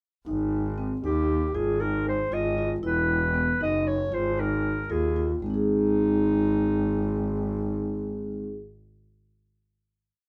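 Soft-mallet vibraphone arpeggios ring out in a mellow ostinato at 0.3 s, joined by a bowed double bass with a focused vibrato tone playing root and fifth on the main beats. This restless yet hopeful chamber piece moves in 5/8 at 233 BPM (eighths) in Ab major. At 1.0 s a classical-style clarinet enters up front with a soft attack, shaping a motif-based melody in arching phrases within a moderate studio reverb, before the trio settles on a final Ab chord from 5.4 s.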